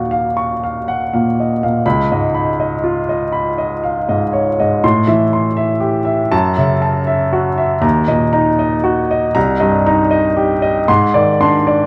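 A clear baby grand piano, intimate and up front with audible action noise and long sustain, plays a mysterious, wistful impressionist solo in a slow, rubato 6/8 at 40 BPM, ranging from C2 to Db6 through drifting chords from Ebm9 to Ab(#11) across about 11.9 seconds of a longer piece, heard through close, detailed microphones in a moderate scoring-stage reverb.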